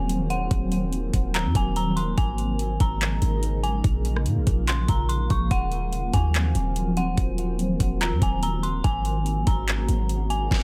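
A half-time groove at 144 BPM drives this melancholic, ethereal slice of atmospheric cloud-rap in Eb dorian, built on an electronic R&B drum kit with a knocking kick, deep snare, metallic hats, rim clicks and handclaps, over a clean, boomy sine 808-style bass that sits up front. Above them, a shimmering, granular ambient pad holds sustained chords, moving from Ebm69 through Ab9sus4 and Bbm7, with chorus, phaser, reverb and sidechain pumping. An eerie, inharmonic FM synth bell carries the melody through low-pass filtering and tape echo, and a very quiet electronic swell comes in at 10.3 seconds as this cut from a longer piece closes.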